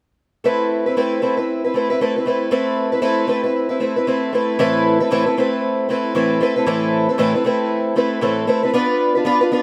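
Wistful and reflective, this pop fragment in A minor at 116 BPM, cut from a longer piece, features a fingerpicked twelve-string acoustic guitar with a shimmering, octave-doubled, boxy archtop tone sitting up front in light reverb, moving through a swung 16th feel from an Amadd9 chord at 0.4 seconds to a Bdim at 8.7 seconds.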